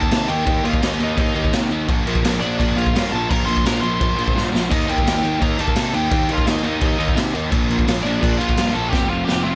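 Punk rock at 171 BPM, rowdy and energetic, in a short cut from a longer piece that moves between Eb and Bb chords before landing on an F5. A crunchy, bright, double-tracked overdriven guitar drives the riff up front while a nasal, dark lead guitar with a parked wah and overdrive carries the melody, and a growly fuzz bass sits in the background. The raw garage drum kit is up front with a boomy kick, dark cymbals and a saturated, gritty small-room pump, throwing drum fills at 4.4 and 8.9 seconds, all in a dry mix with little reverb.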